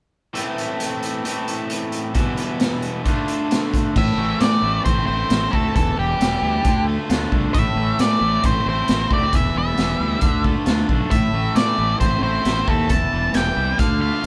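A straight 4/4 beat at 134 BPM drives this swaggering, gritty classic rock cut in A minor, a section lifted from a longer piece. From 0.3 seconds, two guitars hammer out the riff together: a bright, cranked stack guitar and a crunchy overdriven one, both picked over a looping Am, Em, Dm progression. The raw garage drum kit sits up front with a punchy kick, a medium-tuned snare, hi-hat and crash, its saturated sound pumping in a small room with a rolled-off top. At 4.0 seconds the band opens into the next section as a dark, up-front octave-fuzz lead guitar takes the melody and a round, fingered electric bass thickens the bottom with overdrive. The whole band sounds as if it's playing live in one room under a light reverb.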